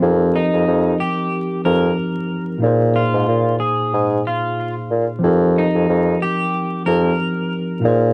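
A home cassette sound with vinyl crackle and light reverb frames this dark, moody boom-bap hip-hop excerpt, which swings its 16ths with a relaxed, head-nodding feel. A worn, slightly out-of-tune tine electric piano sits up front in accompaniment, its tone lightly overdriven and filtered as if through built-in speakers, with the tape grit of the cassette clinging to it. Underneath, a mellow bassoon carries the bass line in a classical style, smooth on top with a light vibrato, playing throughout from 0.0 seconds. An electric guitar at the edge of break-up enters at 0.4 seconds to play the melody, its dark, fingered tone thickened by lush chorus and analog delay before it drops out at 7.8 seconds. The harmony moves from F9sus4 to Bb9sus4 and back, giving the short passage a suspended, unresolved haze.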